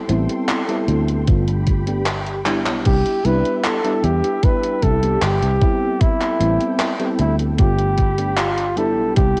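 Heard through a home cassette recording with light reverb and a digital ambience, this nostalgic, faded vaporwave piece moves at a slow 76 BPM in C major, drifting over Am7, G7 and Cmaj7 chords. A mellow FM electric piano with chorus, 12-bit sampler grit and analog delay rides above a round, dark fingered bass, while a silky string machine holds chords in the background. A gated 80s drum machine supplies crash, handclaps and hi-hat, a thumpy, up-front electronic kick joins at 1.3 seconds, and after a drum fill at 2.5 seconds a close-miked flugelhorn takes the jazz-style solo melody with vibrato, cassette coloring and tape echo.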